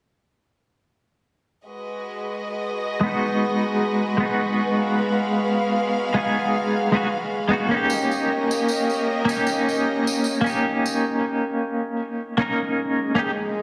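A chamber violin section opens at 1.7 seconds with soft-attack sustained chords, bowed sul tasto with light vibrato, giving an intimate, close and smooth-topped sound in a cinematic, melancholic trip hop piece at 77 BPM in 4/4 with a gentle sixteenth-note swing. At 3.0 seconds a clean, picked semi-hollow electric guitar joins up front as accompaniment, its compressed hollow-body tone shaded by tremolo, a low-pass filter and tape echo. Midway through, the harmony moves from G#m7 to D#7, and a distant acoustic tambourine adds percussion from a large room. The violins and tambourine stop at 11.0 seconds for a break where the guitar carries on, and an electronic swell joins it in the closing moments. A lush, wet hall reverb soaks the whole mix in a dreamy haze, and the recording is cut from a longer piece.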